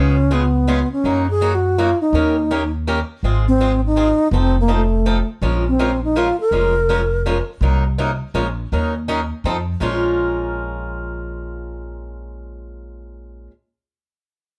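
A wooden-headed alto flute, airy and close-miked, unsteady and rich in vibrato, carries the melody over a bright, boxy picked acoustic guitar and a dark, thumpy gut-string upright bass in this bittersweet yet fiery stretch of acoustic jazz manouche in a swung 3/4. The flute's soft-attacked line bows out at 7.4 seconds, leaving the guitar, with its audible finger squeak, and the woody plucked bass to carry on until 13.5 seconds, all three parts sitting up front in light reverb.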